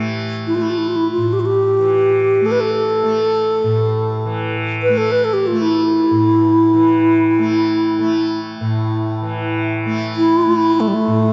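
Haunting and spacious, this free-time world meditation excerpt opens on a mellow, buzzing tanpura drone, joined at 0.5 seconds by an airy bass flute melody with vibrato and tongued notes up front, while a glassy, ethereal glass harmonica with a slow attack and beating drifts in the background from 6.8 seconds, all bathed in a long cathedral reverb with a softened top end.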